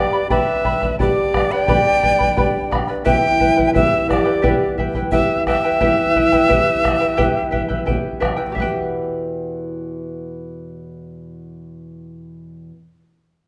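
A breathy, reedy cane quena carries the melody up front with vibrato and tongued notes, joined by a hollow, mellow wooden pan flute in the background on a second line, in this earthy, wistful Andean folk excerpt at 87 BPM in E minor pentatonic. A shimmering charango with fingerpicked double strings and a small, warm-toned fingerpicked nylon-string guitar accompany throughout, moving from G to Em. A deep, dark bombo sounds distant in a large room beneath the moderate recital hall reverb. The two flutes stop at 7.8 seconds and the bombo at 8.9 seconds, leaving the plucked strings to carry on alone.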